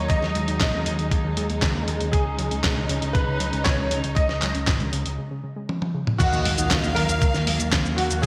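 A straight 4/4 pulse at 118 BPM drives this nostalgic, melodramatic italo disco fragment in Eb minor. A thumpy, gritty electronic kick pairs with an up-front sampler-style soul kit whose fat snare, hi-hat, cabasa, handclaps, toms and crash cymbal sit in gated reverb, while a dark, round picked electric bass anchors the low end. A clear, polished baby grand piano carries the melody through ensemble chorus and delay over distant bowed strings with vibrato and portamento, and a very quiet, warbling lo-fi pluck spins detuned arpeggios as the harmony moves from Ebm to Dbsus2. After a break at 5.2 s and a drum fill at 5.7 s, the chords land on Ebmadd9 at 6.2 s as mellow, brassy synth stabs enter in the background with a faint electronic impact, and the mix is steeped in lush hall reverb and bright 1980s-style digital production.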